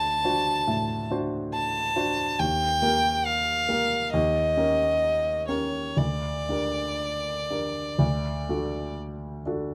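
Close, detailed microphones and a light reverb give this short fragment of a longer classical piece an intimate, present sound. It is a romantic duo in an elegiac, solemn mood, moving in four with a flexible, rubato feel. A clear, smooth violin carries the melody up front, one bowed player with an even tone and vibrato, singing in a high register. Beneath it, a warm baby grand piano provides the accompaniment, its short sustain and audible action noise adding a natural, close-up quality. The harmony passes from D7 through Eb and Eb7 to Gm/D before settling on D. The violin stops at 9.0 seconds, leaving the piano to sound alone until 9.7 seconds.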